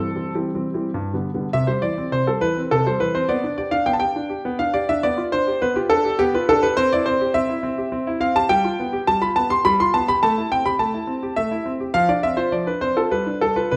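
Playful and cheerful, this short passage from a classical-period piano sonatina moves in triple metre with a straight feel. A single concert grand carries everything as the solo instrument, sitting up front with a clear, slightly worn tone and a deep bass, ranging from G2 up to C6. After a brief opening phrase that ends around 1.5 seconds, the music settles into a longer second section that runs to the end at 13.8 seconds. The harmony stays simple, shifting between tonic and dominant chords before stepping through Am7 and Dm7/F to close on a G7 that leaves the phrase hanging, as it is cut from a longer piece. A moderate recital-hall reverb surrounds the instrument, and the overall production leans dark and warm while the piano keeps its natural character.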